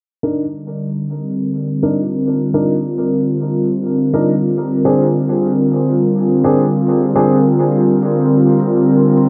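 Ambient dub at 104 BPM in a spacious, deep mood: an airy, breathy pad with chorus holds sustained chords from Cm9 to Bb9, while a clear, woody upright piano with audible action noise plays stabs through a low-pass filter, dub echo and a filter sweep until 7.3 seconds, over a very quiet, overdriven electronic hi-hat, all set in a moderate echo chamber reverb.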